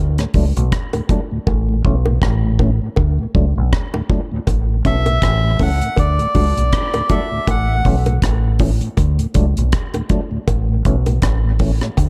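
A dark, lightly reverberant studio sound frames this spacious, laid-back dub reggae excerpt at 80 BPM in A major, swung on the 16ths as the chords shift between D and A. A round fingered electric bass sits up front beside a deep drum kit of tight kick, rim click and hi-hat, with the hi-hats muted from 1.5 s to the end of the opening break, while a mellow tonewheel organ turns through chorus vibrato and slow rotary speaker and high-tuned bongos carry dub echo. At 4.8 s a clean, compressed electric guitar appears briefly in the background, joined at 4.9 s by a reedy, breathy, close-miked melodica melody, both trailing dub echo.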